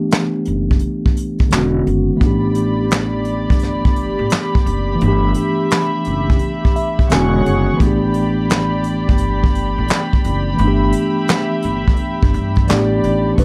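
A mellow, softly filtered sound with light reverb frames this melancholic, reflective lo-fi hip hop excerpt, cut from a longer piece and moving in 4/4 with a swung sixteenth-note feel. A clean tine electric piano sits up front from the first moment, playing accompaniment through its built-in speakers with a low-pass filter dulling its edges, while a vintage brush drum kit with a punchy kick, medium-tuned snare, hi-hat, handclaps and a rolled-off top joins at 0.1 seconds alongside a barely audible finger snap. A woody, thumpy upright bass with gut strings enters at 0.5 seconds, plucked and dark beneath the chords. At 2.2 seconds a bowed studio string section arrives with soft-attack, sul tasto sustained chords, floating behind the band through a plate reverb and its own low-pass filter. The harmony drifts among G6, E13 and A9sus4, and the electric piano steps forward with a fill from 6.4 to 7.8 seconds.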